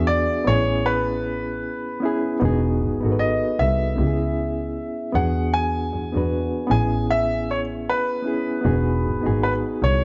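A bowed double bass, a reed electric piano and a baby grand piano all sound together from the first moment of this smooth, introspective neo-soul and R&B excerpt, which is cut from a longer piece and carries a lightly swung sixteenth-note feel. The bass, played by a single bowed player, sits up front with an earthy, nasal tone and a light vibrato in its low register. The electric piano supplies reedy accompaniment through its built-in speakers, lightly overdriven and shimmering with a fast tremolo. Above it, the baby grand carries the melody in an intimate, natural voice, with its action noise audible. The harmony moves through Amaj9, Emaj9, C#m7 and E7 before returning to Amaj9 at 6.7 seconds and Emaj9 at 8.6 seconds. A small room and light reverb frame a dark, warm production whose top end stays below 7.9 kHz.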